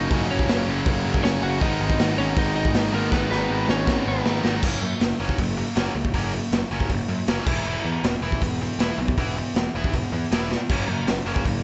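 A compressed, slightly broken-up lead guitar melody with digital delay rides over a bright, tight distorted guitar riff, a double-tracked high-gain guitar in the background, a very quiet overdriven guitar and a growly fuzz bass, while a gritty, boomy, up-front garage drum kit in a small pumping room drives this rowdy, rebellious punk rock excerpt. The lead drops out at 4.4 seconds, and the high-gain part follows at 4.6 seconds as the chords shift. The quiet overdriven guitar returns at 10.7 seconds after a drum fill.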